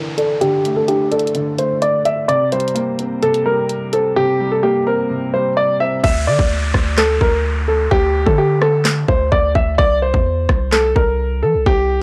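A brooding, hard-hitting trap and hip hop cut from a longer piece opens on a warm grand piano melody over a felt-muted upright piano with thin felt, audible action noise and a boxy, intimate tone, both softened by a low-pass filter while an electronic downlifter sinks beneath them and a filter sweep runs through the opening section. The electronic trap kit comes in at 0.2 seconds at 128 BPM in a half-time 4/4 feel, with a hard-clipped kick, a sharp snare, bright hi-hats, handclaps, rim clicks and crashes, all re-recorded in a small room and placed up front. At 6.0 seconds the upright piano drops away, the hi-hats fall silent, the downlifter returns, and a long, deep, sine-toned 808-style bass with a fast attack and decaying tail takes over the low end. The harmony moves from Dsus2 to C5, then D5 and C. The whole track has a dry, gritty hardware character with transformer saturation and a cassette-tape grain, with little reverb.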